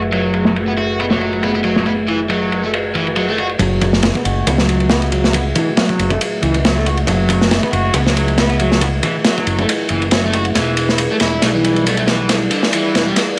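Gritty and swaggering, this breakbeat excerpt from a longer piece rides a swung groove in 4/4. A crunchy, saturated breakbeat kit sits up front with a tight kick, a medium-tuned snare, dark cymbals and a rolled-off top, while a fingered electric bass plays low and warm beneath it. A bright, double-tracked overdriven guitar carries the picked riff through an analog delay. Deep in the background, a moody sawtooth pad holds sustained chords with chorus, reverb and sidechain pumping. From 3.6 seconds a build-up takes hold, with a filter sweep on the guitar, and at 10.6 seconds the harmony shifts from F#m7 to Em7 as a drum fill kicks in. The mix has a dry, hardware grit with a short studio room around it.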